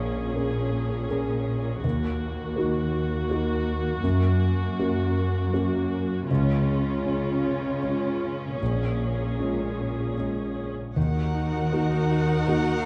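A dark, mellow concert grand piano sounds from the very start of this sorrowful, moving cinematic score in Eb minor, sitting up front with audible action noise alongside rich, vibrato-laden violas and a lush, focused cello section carrying the bass in a rubato 3/4 at around 75-83 BPM. The chords move from Bbm7 through Ebm, Gb and Db before returning to Bbm7, all bathed in a moderate scoring-stage reverb. At 11.0 seconds an expressive violin section with soft attack joins on a second line while a very quiet, ringing harp adds fingerpicked arpeggios as the harmony settles back on Ebm.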